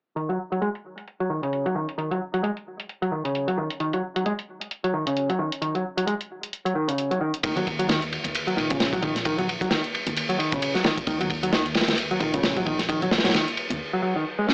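Breakbeat in a funky, swaggering mood, this excerpt moves at 132 BPM in 4/4 with a swung 16th-note feel, centred on E-flat minor. An overdriven picked electric bass opens at 0.2 seconds with a dark, round, punchy riff sitting up front, its tube saturation, low-pass filtering and analog delay shaped by a filter sweep that runs through the whole passage, while a tape-toned analog electronic hi-hat ticks beneath it in a small room. At 7.4 seconds a crunchy acoustic breakbeat kit arrives with a tight kick, medium-tuned snare and dusky ride, saturated and rolled off at the top, alongside a woody, thumpy pizzicato upright bass on gut strings. Very quiet, bright congas struck with hard hands join just after, compressed and saturated. The upright bass, congas and hi-hat drop out at 13.8 seconds for a short break, leaving the picked bass and the breakbeat kit to carry on, and the whole take has a dry, lo-fi hardware grit with the thin, boxy character of an AM radio and only light reverb.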